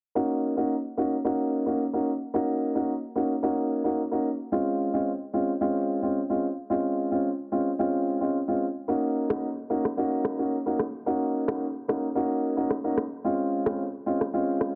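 Sultry and mellow, this short excerpt from a longer afrobeats piece moves at 110 BPM in 4/4 with a straight feel in Eb dorian, as a clear, natural baby grand piano sits up front in the middle register, alternating Ebm7 and Dbmaj7 chords. At 8.9 s an electronic shaker and rim click enter with a tape-warm, produced character, the snare touched by soft clipping. Light reverb and small room ambience frame a dense, heavily limited modern master, with a low-pass filter sweeping across the whole passage.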